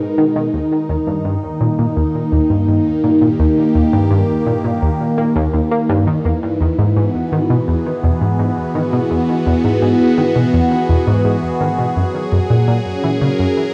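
Mysterious and cosmic, this 84 BPM excerpt of ambient, sequencer-driven space music sets a swirling, wave-folded analog pad holding sustained chords through phaser and chorus against a tight, detuned sawtooth riff with a filter pluck, chorus and analog delay, moving from G#m through D#, Emaj7 and F# under a moderate plate reverb with the grain of cassette tape.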